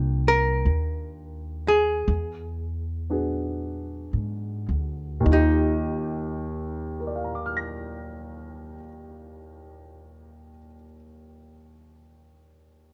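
A jazz ballad in Eb major at a very slow 34-45 BPM, swung and intimate, this tender excerpt from a longer piece slows down over its first 5.3 seconds as the harmony moves from C9sus4 through E7 to Ebmaj9. A clean, picked hollow-body electric guitar carries the melody up front alongside a woody, thumpy pizzicato upright bass, both stopping at 8.8 seconds. A dark, mellow concert grand with deep bass and short sustain continues alone until 12.9 seconds, all within light reverb.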